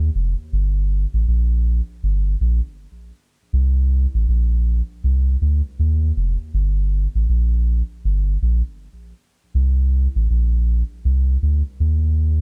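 A soft dub sub bass carries this short reggae cut entirely alone, playing from 0.0 to 12.4 seconds in a low register between F1 and Eb2. Its tone is deep and round, with a triangle and square wave character, a fast attack and sustained notes that sit up front in the mix. The groove moves at 80 BPM in 4/4 with a swung sixteenth-note feel, and the piece is in C dorian, tuned to A4 = 439 Hz. The mood is heavy and deep, and the dry sound keeps the bass close and present. A new section begins at 9.5 seconds and runs until the fragment ends, clipped from a longer piece.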